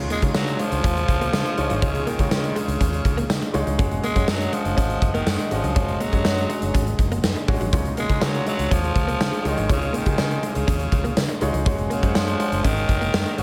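A lush hall reverb and a small-room ambience give this short cut from a longer 1980s-style pop track a big arena sound. At 122 BPM in a straight 4/4 and D-flat major, it moves between Dbadd9 and Gbsus2 with a nostalgic, uplifting mood. A breathy tenor saxophone carries the melody from 0.1 seconds, raspy and gritty with vibrato and a touch of slapback echo, sitting present as a solo voice. Up front, a big rock drum kit with a punchy kick, a medium-tuned snare, hi-hat and tambourine drives the groove, while a dark, round, foam-muted fingered electric bass anchors the low end. In the background, a polished grand piano plays accompaniment and a tight horn section adds pop-style stabs with a smooth top, delay and slapback echo, while a very quiet clean electric guitar, recorded direct and compressed, picks out a riff.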